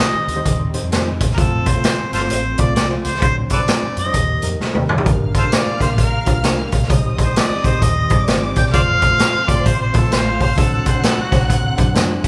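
Recorded by a band playing live in one large, reverberant room, this uplifting, swinging 1960s-style soul passage puts a vintage harmonica up front with scooped notes, tongue slaps and light vibrato, moving into a solo at 5.1 s after a drum fill, over a raw, saturated garage drum kit with a boomy kick, a round, foam-muted electric bass, a gritty overdriven reed electric piano through a combo amp, and a dark, woody string section in the background, while a distant, expressive violin section joins at 5.1 s.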